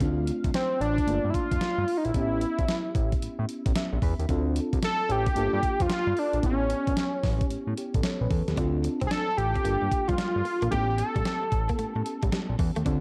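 A round, chorused FM electric piano, a fat sawtooth analog bass with a moving filter sweep, and a thumpy, sampler-style 12-bit drum machine open this slick, confident stretch of swung R&B new jack swing, joined at 0.5 s by a bold, retro, detuned octave-doubled lead with vibrato, chorus and digital delay, before a bright, compressed, picked clean electric guitar riff sits in the background from 8.6 s, all in a dark, lightly reverberant mix.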